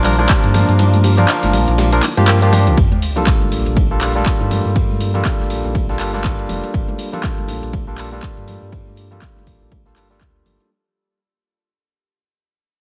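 A swung 4/4 groove drives this hypnotic, late-night deep house excerpt, cut from a longer piece, with punchy analog drum-machine handclaps, hi-hat and rim click, a gritty sampler-style ride and snare in the background, a jingly tambourine and very quiet soft-handed congas and bongos. A tape-warm electronic kick enters at 0.3 seconds but drops out during the opening drop, while a deep, sine-like sub bass with an octave pumps against the beat. Over this, a bright, barky tine electric piano plays up-front, lightly overdriven stabs with tape echo. The opening stretch is dressed with a smooth, detuned analog pad, a dark, lo-fi pluck spinning chorused arpeggios into dub echo, and a barely audible silky string machine, all of which fall away as the second section begins at 2.8 seconds. There, a very quiet sub drop marks the impact, a filter sweep moves across the electric piano, and the track fades out beneath light reverb and a steady bed of vinyl crackle.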